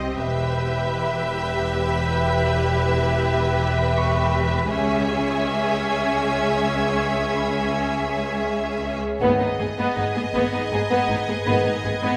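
A bowed violin section carries the melody in this ominous, eerie cinematic excerpt, its rich vibrato tone set against a second violin line, a clear and distant viola section, and cello and double bass sections anchoring the bass, all moving slowly in 3/4 at 80 BPM in G# harmonic minor. Behind them, a bright, pulsing gated texture with chorus holds sustained chords in the background, while a very quiet fingerpicked concert harp rings and a high violin section adds a smooth, even shimmer from 0.2 s. The harmony shifts from Em to C#m and settles on G#m at 9.2 s, where a dark, soft-edged French horn section enters with sustained chords, all bathed in the lingering reverb of a church or concert hall.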